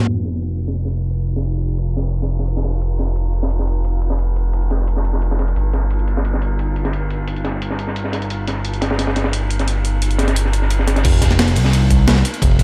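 A straight 4/4 liquid drum and bass groove at 175 BPM sets a lush, soulful mood, built from two breakbeat kits: a compressed sampler-style kit with a medium-tuned snare, crash and hi-hat, and a dark, saturated acoustic kit with a high-tuned snare, rolled-off cymbals and filtered room sound, both in studio reverb. An up-front, smooth sawtooth-and-square synth bass with a moving notch sustains beneath them through a long filter sweep, and a thumpy, gritty electronic kick joins at the drop at 11.0 seconds in this fragment of a longer track.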